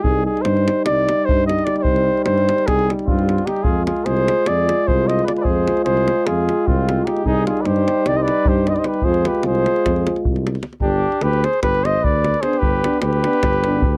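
Balkan brass band folk music, fiery and virtuosic, moving at a rapid 302 BPM counted in eighths in an asymmetric 9/8 metre with a straight feel, set in F dorian with a raised fourth. A flugelhorn carries the melody up front with a smooth, rounded top and classical poise, while a tuba anchors the low end with a mellow bass line and a tight, close davul drives the rhythm. A euphonium fills in the middle with a warm, smooth-topped accompaniment, and a trombone adds a gently vibrato-tinged layer further back in the mix. A trumpet joins at 3.1 seconds with a second line marked by light vibrato, thickening the texture as the harmony moves between C minor and F minor. The dry, close studio sound with light reverb has a 1970s character, and this cut from a longer piece ends on a G chord as a new section begins at 10.8 seconds.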